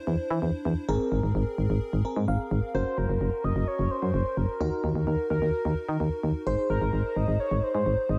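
A straight 4/4 pulse at 129 BPM drives this upbeat, bright synth-pop excerpt in Ab mixolydian, cut from a longer piece. An FM electric piano with a soft pad layer opens the accompaniment at 0.0 s, its lush, detuned tone softened by chorus and phaser, and it plays a short fill from 2.0 to 2.7 s. A solid FM bass enters almost at once, punchy and round with a fast, decaying attack sitting up front in the mix. At 2.7 s a velvety synth lead takes the melody, smooth and sustained with vibrato, chorus and delay, as the harmony moves through Gb, Ebm and Ab after opening on Cadd9/E and Abadd9. A moderate plate reverb soaks the whole mix, lending it a dreamy sheen.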